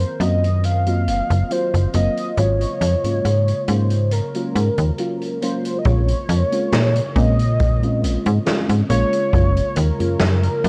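A slow, straight 4/4 pulse at 69 BPM opens this woozy, melancholic vaporwave cut from a longer piece, with a distant, roomy big-band style kit playing hi-hat and a medium-tuned snare whose top is rolled off. A boomy acoustic kick joins at 5.9 seconds and drops out at 9.5, while a snappy, metallic slap-like FM bass sits up front, its fast attack decaying under everything. A mellow, round FM electric piano with a faint noise layer and analog chorus enters at 0.2 seconds to carry the accompaniment, and a very quiet, detuned, wave-folded tape-like pad hums sustained chords beneath it. On top, a velvety, full-bodied synth lead sings the melody with vibrato, chorus and tape echo. The harmony drifts through lush extended chords such as Ebm69/Gb, Ab13sus4, Bbm9 and Gbmaj9, all steeped in light reverb and the worn, warbling pitch drift of an old cassette.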